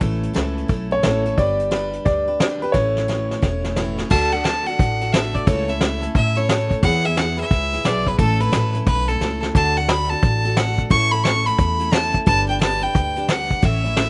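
A swung 4/4 feel at 176 BPM sets an easygoing, down-home honky-tonk and classic country groove, carried by a vintage brush drum kit placed up front, with a fat snare, punchy kick, hi-hat and dark crash cymbal. Underneath, an upright bass thumps out woody, gut-string pizzicato lines, while a bright, full-bodied dreadnought steel-string guitar supplies picked accompaniment with fresh-string sparkle, audible finger squeak and a slapback echo. A clear upright piano, intimate and natural with audible action noise and its own slapback echo, takes a short solo spot from 0.9 s over A and G chords as a drum fill leads toward the change. At 4.1 s a single bowed fiddle takes the melody with light vibrato and an earthy, smooth-topped tone, riding the D, A/C#, E and A progression. The sound is dry and close, recorded outdoors with little reverb and a rolled-off top end, in this excerpt cut from a longer piece.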